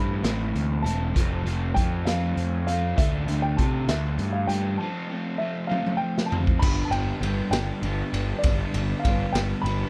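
Upbeat yet wistful, this short indie rock excerpt in G mixolydian rolls along at 66 BPM in a straight 6/8, with a crunchy, double-tracked overdriven guitar riff bathed in spring reverb, a punchy fuzz bass up front, a gritty, saturated garage drum kit with a boomy kick and dark cymbals pumping in a small room, and a woody, slightly detuned upright piano carrying the melody, as chords move from Am through F and Dm before a drum fill from 5.7 to 6.6 seconds lifts the music onto G.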